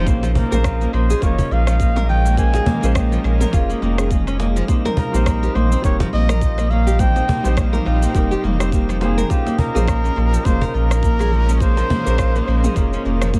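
This mystical, earthy slice of organic downtempo opens on a bed of felt-muted upright piano, a bright, detuned bowed-like drone, fingerpicked nylon-string guitar, a round sine sub bass and a glassy texture of drifting overtones, all in Bb dorian at 104 BPM with a 16th-note swing and a tuning of A4 = 437 Hz. An electronic kick and an overdriven, layered deep house kit of cabasa, rim click and toms arrive at 0.1 seconds, joined at 0.2 seconds by a woody cajon with faint snares. At 0.4 seconds a bucket-muted trumpet takes the solo melody, veiled, breathy and whispered, with vibrato and analog delay. The harmony moves from Bbm7 to Cm at 4.7 seconds and back to Bbm7. Sidechain pumping breathes through the up-front sub bass and the mellow, intimate piano, while dub echo trails the guitar and tape echo colours the piano, kit and cajon, all set in an echo-heavy mix with light reverb and a small room ambience.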